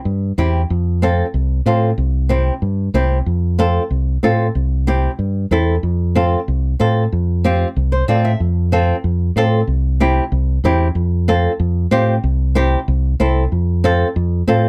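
Danceable and festive, this cumbia passage from a longer piece moves at 187 BPM in F major, with a punchy, direct fingered electric bass up front from 0.1 seconds beneath a warm, fingerpicked flamenco guitar entering at 0.4 seconds, and a brief nylon-string guitar fill at 7.8 seconds leading into the second section, set in a lightly reverberant room.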